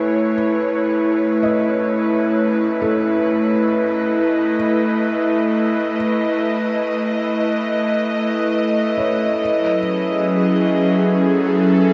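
Peaceful and luminous, this ambient passage is led by an airy, breathy pad sitting up front, its warbling, detuned vintage tone treated with chorus and shimmer reverb as it holds sustained chords that move from A to F#m at 9.4 seconds. Further back, a felt-muted upright piano plays soft, intimate arpeggios with audible action noise, a diffuse ambient delay and shimmer reverb, while a very quiet hand-pumped harmonium holds a reedy, nasal drone. The production is dark and set in a wet concert hall reverb.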